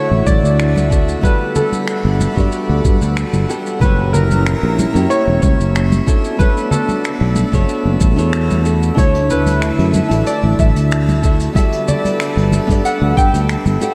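A straight 4/4 groove rests on a knocking, tape-warm electronic kick up front, which enters at 0.3 seconds together with a vintage brush kit with finger snaps, hi-hat and shaker, its top rolled off, and with bright, close congas sitting in the background. Underneath, a sustaining fretless electric bass with tube saturation sounds growly, round and punchy, placed up front in this blissful sunset chillout piece cut from a longer work. A clear, polished concert grand piano carries the melody with a short sustain, colored by analog chorus and tape echo. A fingerpicked classical nylon-string guitar with fresh strings and its own tape echo fills in the accompaniment, while an airy, breathy pad with chorus holds slow-attack chords through Dmaj9, Gmaj9, F#7b9 and Bm9. High above, a glassy texture of drifting overtones with chorus and built-in reverb hovers calmly in the background, and a lush hall reverb soaks the whole dreamy mix.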